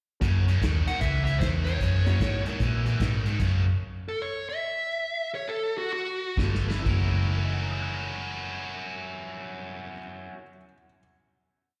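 Electric blues shuffle, soulful and gritty, heard live through a venue's PA with recital-hall reverb: a warm soul drum kit's double shuffle groove, a round, foam-muted walking bass, a bright overdriven guitar boogie figure and a boxy, mellow baby grand comping in the background support an up-front, dark, smooth lead guitar whose motif-based phrases carry on alone through a slowing stop from 3.4 seconds until a drum fill at 6.4 seconds brings the band back for a closing chord.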